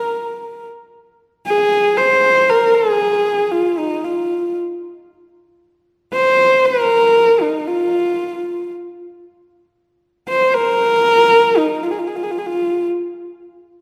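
Windswept and vast, this short excerpt from a longer Mongolian traditional piece unfolds in free time, settling in the yu mode on F. A single horsehead fiddle carries the music alone from the start until 12.9 seconds, its bowed horsehair strings giving a dark, husky, woody voice that sits close and up front. The player shapes the line with vibrato and portamento, moving within a compact range from Eb4 to C5. The performance falls into two sections, the second beginning at 5.6 seconds. A wet concert hall reverb with a 2.0-second decay surrounds the fiddle, lending the intimate playing a sense of open space.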